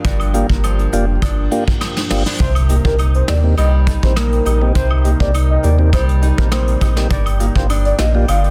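This bouncy, tough dancehall excerpt at 102 BPM opens with a deep, moody ambient pad holding sustained chords in the background, its detuned sawtooth layers thickened by chorus, built-in reverb and sidechain pumping, alongside a bright, fingerpicked nylon-string guitar playing arpeggios through delay. A deep, full sub bass with an octave layer sits up front with a fast attack, while a soft brush drum kit, acoustic and natural in a small room, carries hi-hat, tight kick, rim click and a medium-tuned snare, with soft clipping on the kick and snare. Woodblock and cabasa enter at 0.2 seconds, sounding distant in a large room, and a mellow, round tonewheel organ with key click joins at 0.3 seconds, turning slowly through its rotary speaker. A reverse cymbal rises from 1.5 seconds and a drum fill leads to an electronic impact at 2.4 seconds, where a soft octave-layered synth lead takes the melody with a sub octave, vibrato, chorus, phaser and delay. 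The harmony moves from Gm7 to Cm7 and back to Gm7, and the dense, heavily limited modern master keeps the whole groove close and loud.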